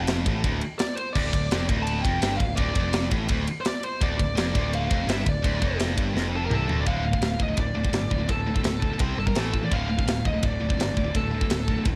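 A straight 4/4 pulse at 168 BPM drives this dark, epic heavy metal passage in D minor, cut from a longer piece. An up-front, tight acoustic drum kit in a big, airy room sets the pace with a tight kick, medium-tuned snare, toms, and bright crash and ride cymbals, its polished sound carrying a cassette-tape tint. Two picked high-gain rhythm guitars play the riff low in the range, one scooped and the other sitting in the background, while a direct, modern picked electric bass holds the low end beneath them. Over this, a warm, distorted lead guitar carries the melody in a higher register, colored by cassette tape and analog delay. A drum fill from 6.1 to 6.9 seconds leads into the second section, where the harmony moves from D minor into power chords on D, C and A, the whole home cassette recording set in studio reverb.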